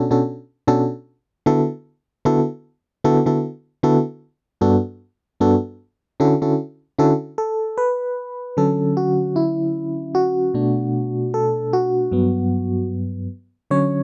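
Reggae at 76 BPM in D major, with a light swing on the sixteenths and a smooth, tender mood, this short cut from a longer piece features a solo FM electric piano with tremolo. The piano sits up front with a mellow tone, a fast attack that decays, and a noise layer, moving through chords such as Bm9, Gmaj9 and Dmaj7. The sound is a dry, close 1970s-style studio recording with light reverb, and the piano's solo passage runs from 7.4 to 14.0 seconds.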